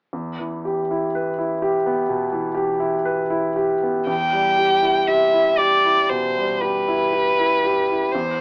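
A slow, rubato 4/4 pulse of 56-63 BPM carries this melancholic, solemn romantic duo in E minor, a fragment from a longer piece. A clear, naturally sustained baby grand piano plays the accompaniment alone from 0.1 seconds until a rich solo violin enters at 4.1 seconds, singing an expressive bowed melody with vibrato and portamento while the piano continues beneath. Both instruments sit up front in a moderate studio reverb, filtered through a narrow, AM-radio-style tone.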